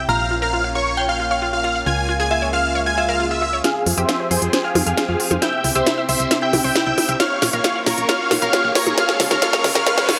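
A lush, chorused unison pad and a punchy, round FM bass open this driving, bittersweet uplifting trance excerpt at 135 BPM in F harmonic minor, joined almost at once by a huge, euphoric supersaw lead with phaser, 12-bit grit and dub echo, a catchy plucky unison lead, a warbling analog pluck arpeggio under a filter sweep, and a glassy FM bell that drops out at 3.6 seconds, when a cracking techno drum kit with smooth hats enters for a build-up and fill, while very quiet swells and risers, starting at 3.0 seconds, lead to a reverse cymbal at 9.9 seconds, inside a long ambient reverb.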